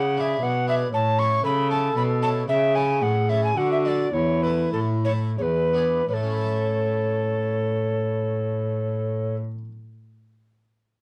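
Heard through worn, warbling old cassette tape with a moderate studio ambience, this flowing, serene excerpt of a baroque-style sonata movement in A major and 3/4 moves with rubato between 83 and 118 BPM, slowing from 1.7 s to 6.1 s, as the close-miked alto recorder carries the melody up front with an airy, chiffy straight tone over a mellow, vibrato-tinged baroque flute second line, a rich, reedy gut-string cello bass and a brilliant, plucked harpsichord accompaniment that rings on alone until 9.7 s.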